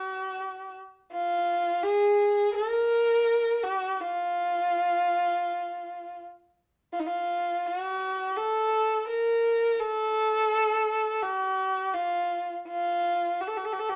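In a straight four-four pulse, this hypnotic, longing Persian excerpt features a lone kamancheh played solo and up front, its dark, smooth-topped bowed tone shaped by soft attacks, expressive vibrato and gliding portamento, moving into a new section at 6.9 seconds within a wet studio reverb.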